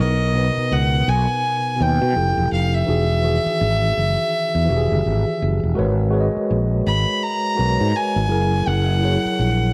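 Sultry and late-night, this R&B excerpt moves at an unhurried 83 BPM in 4/4, with a lilting swing on the sixteenths and a home key of G# minor. A clear, bowed fiddle carries the melody up front, a single player whose intense tone has a smooth top and a light vibrato as it sings in a high register. Beneath it, a tine electric piano supplies clean accompaniment heard through its built-in speakers, while a fretless electric bass, direct and amped, sits prominently with a growly, electric edge. The harmony drifts through lush extended chords, from Bmaj7 through Fmaj9 and Emaj9 to G#m11 and on to F#9 at 8.3 seconds. All three parts play together throughout the 9.7-second passage, bathed in a moderate echo-chamber reverb that lends the mix a soft, enveloping glow.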